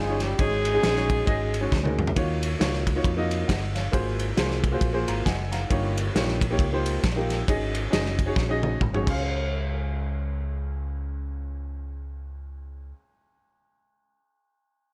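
Light studio reverb gives this short cut from a longer uptempo gospel piece a close, up-front feel, with a reverent yet hopeful mood. It moves at 135 BPM in a swung 4/4 in Db major, with a mellow horn section opening on the melody in jazz style, its smooth top, light vibrato and octave doubling heard until 1.7 seconds. A round, amped fingered electric bass and a dark, woody upright piano carry the accompaniment throughout, the piano stepping forward with a fill at 4.8 seconds. The soul drum kit, acoustic with a pumping small-room sound, a tight kick, medium-tuned snare, rolled-off top, ride, crash and toms, adds fills between sections before dropping out at 9.2 seconds. The harmony moves through suspended and extended colours, settling on Dbmaj7 at the close.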